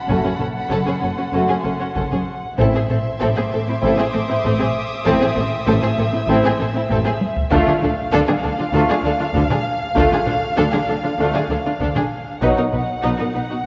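Muted violins open this uneasy, tense suspense cue, one section carrying a veiled, vibrato-rich melody, another a lush second line beneath it, and a third a high texture that drops out at 7.2 seconds. Dark con sordino violas, cellos and distant, soft-edged double basses fill in the harmony and low end under mellow, vintage-toned French horn chords, while a taiko ensemble struck with hard sticks sits in the background and adds a brief fill around 6.9 seconds. The whole passage is bathed in the long reverb of a concert hall and colored by worn cassette tape, whose warbling pitch drift and dulled top end give the cut-off fragment a faded, unsettling cast.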